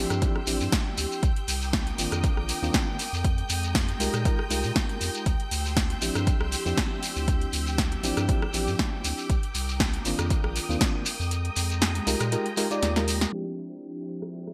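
A light reverb and a bright 1980s-style digital sheen, softened by a low-pass filter, frame this moody, hypnotic deep house excerpt at 119 BPM in 4/4 with a 16th-note swing, set in D phrygian and moving through minor eleventh chords on D, C and F. An overdriven electronic kick sits up front with a deep thump, joined by a punchy, layered drum kit of metallic hi-hats, snare, rim click and crash cymbal, wrapped in small-room ambience and gated reverb, while a grainy, mellow shekere adds acoustic grit. A round, dark analog bass and a soft FM electric piano playing chorused, delayed stabs both pump against the sidechain, the piano carrying a faint noise layer and a decaying tone. Meanwhile, a silky, warbling string machine holds sustained chords through an ensemble chorus, and a lush bowed violin section with vibrato lingers in the background high above. The kick drops out at 11.3 seconds, a drum fill follows, and from 13.3 seconds a filter sweep moves over the string machine as the bass and violins stop and the piece reaches its brief closing section.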